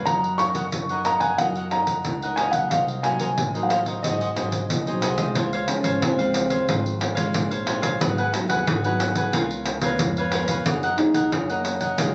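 Crisp, picked cavaquinho and fingerpicked classical nylon-string guitar open this lively, bittersweet samba and choro excerpt, joined at once by jingly, up-front pandeiro and woody, growly pizzicato upright bass. A dark, intimate baby grand piano carries the melody with plate reverb and audible action noise until 5.0 s, and from 5.7 s a breathy trombone takes a jazz-style solo with scooped notes, a smooth top and slapback echo. The sound is that of a phone in a club room: compressed, with a muffled high end.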